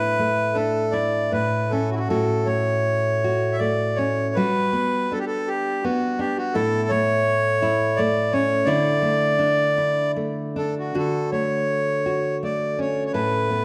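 Celtic folk slow air in a pastoral, wistful mood, moving at an unhurried, rubato pace in three-four time across this short 13.6-second fragment of a longer piece. A reedy single-reed accordion with dry tuning carries the melody, clear and up front, while a fingerpicked nylon-string guitar with a deep classical tone supports it from close by, drifting through chords such as Asus4, Gmaj7 and Dsus2 before settling on Aadd9 at 13.1 seconds. Both sit in a wet recital-hall reverb that gives the church-like space a long, lingering tail.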